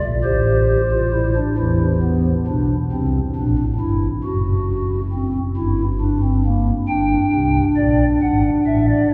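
A hollow, mellow stopped-flute pipe organ plays alone and up front, its tremulant and romantic voicing lending a lively, elegant air to this short fragment of a baroque-style three-part fugue in 6/8 at 45 BPM (dotted quarters), with a straight feel and tuning at A4 = 442 Hz. Spanning Gb1 to G5, the organ moves from F/A through Am and Gm to a closing E7/G#, with a new section beginning at 1.6 s. A wet cathedral reverb with a 5.3 s decay surrounds the soft flute stops, giving the sound of a church or concert hall.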